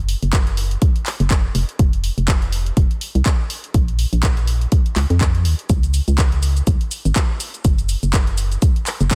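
Piano house at 123 BPM in Db major, this short, feel-good excerpt carries an uplifting mood over a swung 4/4 groove. An organ-like FM bass opens at 0.0 seconds, sitting up front with a hollow, percussive, dark tone whose fast attack then decays, and sidechain pumping gives it a breathing motion. A house drum kit joins at 0.1 seconds with handclaps, shaker and warm hi-hats, layered and produced in a small room ambience. At 0.3 seconds a punchy electronic kick drum arrives, placed up front in the same small room. The whole passage rides on a digital ambience and runs as a single section to 9.2 seconds.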